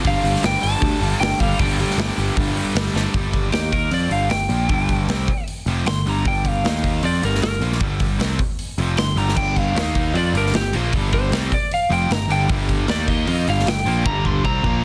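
A slightly broken-up, compressed lead guitar with digital delay carries an aggressive, driving hard rock solo in G minor from 3.1 seconds onward, set over a straight 154 BPM beat in 4/4. Beneath it, a double-tracked overdriven rhythm guitar plays the riff throughout, joined by a brighter distorted guitar in the background that drops out after the opening and returns at 9.4 seconds. A growly picked bass and an up-front rock kit with a boomy kick and a clipped, medium-tuned snare drive the Gm and Eb5 changes, with drum fills closing each section in this dense, heavily limited excerpt from a longer piece.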